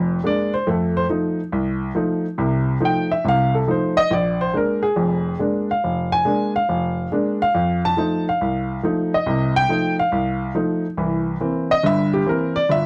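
A solo baby grand piano opens on a Bb7 chord before settling onto F7, setting a relaxed, sophisticated jazz mood at 140 BPM in 4/4 with a swing feel on the eighth notes. The piano is the only voice, sitting present and up front with an intimate, warm character, and the mechanical noise of its action can be heard beneath the notes. Its range stretches from a low F1 up to A5, moving through a bluesy progression in F mixolydian that returns to Bb7 at 4.1 seconds and back to F7 before reaching C7 at 11.0 seconds. A light reverb and a dark, warm production give the sound a close feel, with the instrument tuned slightly high to A4 = 442 Hz. The recording is a short 12.9-second fragment lifted from a longer performance.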